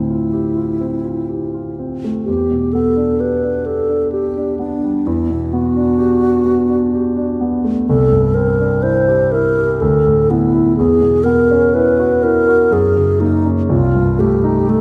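An airy, hollow alto flute sings a hazy, wistful melody with vibrato and tongued notes, up front over a concert grand piano whose deep bass and natural tone carry the accompaniment, in this impressionist classical fragment at a rubato 63 BPM in 3/4, its drifting, colourful harmony bathed in the long wet tail of a scoring stage reverb.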